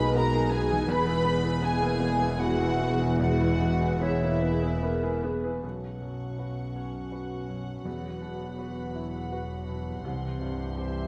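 A tender, hopeful cinematic cue in 3/4 with a rubato feel, cut from a longer piece. A warm violin section carries the melody high in its range, its sul tasto bowing soft-edged and floating, while a second violin line and a silver concert flute add supporting lines, the distant flute dropping out at 5.2 seconds. A clear baby grand piano, intimate enough that its action noise is audible, plays the accompaniment alongside a dark viola section set in the background. A distant, roomy French horn section sustains chords, and a very quiet concert harp rings out mellow fingerpicked arpeggios. Dark cellos and a rich double bass section anchor the low end, and a dark solo clarinet slips in briefly from 4.0 to 5.6 seconds. Moderate scoring-stage reverb gives the dark, warm production its sense of space as the harmony moves through open suspended chords in the second section toward a closing C.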